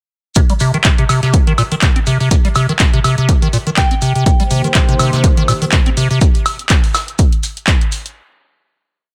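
A squelchy, resonant square-wave acid bass sits up front from 0.4 to 6.2 seconds, running a 16-step line with accents and slides through tube saturation, subtle chorus and tape echo. This whole acid house piece is a trippy, gritty groove in C minor at 123 BPM with a 16th-note swing. A punchy four-on-the-floor kick and a tape-warm analog drum machine carrying claps, hi-hats and woodblock drive the groove, over a very quiet brushed kit with a looped, edited breakbeat. A soft, pure FM synth bell adds brief mellow phrases with phaser and echo, and a detuned sawtooth pad brings smooth sustained chords with sidechain pumping from 4.3 seconds, all in a light small-room ambience.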